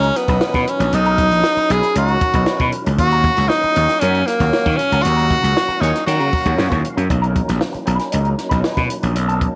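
A straight 4/4 funk groove, driving and hypnotic, rides on a dry cocktail drum kit with a high-tuned snare and tight kick, while an overdriven, growly slap bass sits up front. A bright tenor saxophone with vibrato carries the melody until 6.8 seconds, over a slightly broken-up electric guitar with wah and spring reverb in the background and a very quiet, fat tonewheel organ with key click and slow rotary that sustains chords moving from Bmaj9 to D#m7 and back. During a band accent, a distant, punchy horn section with octave doubling adds a brief second line at 5.8 seconds, and light reverb gives this cut from a longer piece a touch of space.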